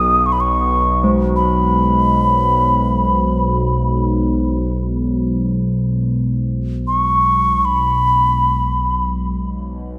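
A mellow alto ocarina and an analog drone open together in this peaceful, free-time meditation excerpt from a longer world piece, the ocarina carrying the melody up front with a clay, airy tone, tongued notes and expressive vibrato, its lines trailed by a delay. Beneath it, the drone holds a low B1, built from detuned sawtooth, pulse and sine waves with pulse-width modulation and wave-folding, evolving under a chorus and sustained by a slow attack and long release. At 1.0 s a bronze singing bowl joins, struck with a wooden striker and ringing with a bright, metallic shimmer and slow beating that sits lower in the mix. The ocarina falls away at 9.1 s, leaving the bowl and drone to ring on. A moderate, lush hall reverb gives the whole a spacious, unhurried calm.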